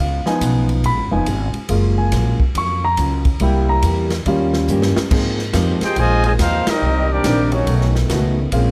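Big band swing at 141 BPM, energetic and brassy, opening with a warm grand piano solo over woody, growly pizzicato upright bass, a very quiet picked steel-string acoustic guitar with finger squeak, and an airy, polished drum kit with a punchy kick, until a drum fill leads into Ab major at 5.1 seconds, where a trombone section adds sustained chords in the background, a mellow trumpet section with light vibrato takes the melody up front at 5.8 seconds alongside a soft-attack trombone second line, and the band hits an accent at 6.6 seconds, all in a close, detailed sound with light reverb.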